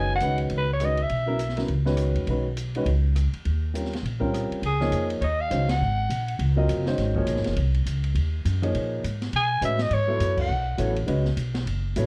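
A growling, raspy soprano saxophone with vibrato and scooped notes leads this spiritual, searching modal jazz excerpt at a swinging 204 BPM, playing short phrases from 0.0, 4.7 and 9.4 seconds over woody upright piano, thumpy pizzicato upright bass and an open drum kit with dark cymbals and a boomy kick, with band accents at 5.7 and 10.4 seconds, all carried on worn, warbling old cassette tape in light reverb.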